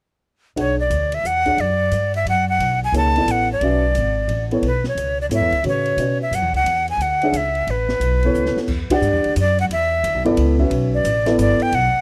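Modal jazz in a searching, cool mood at a brisk 177 BPM in swung 3/4, where a breathy, vibrato-tinged flute with a chiffy attack carries the melody over dark, mellow baby grand chords and woody pizzicato upright bass, while a jazz kit with a boomy kick and high-tuned snare sits low in the mix, all captured in a dry, close 1970s-style studio sound; in this fragment of a longer piece, a drum fill at 8.4 seconds leads the harmony from B dorian into E dorian at 8.7 seconds, punctuated by a band accent at 8.9 seconds.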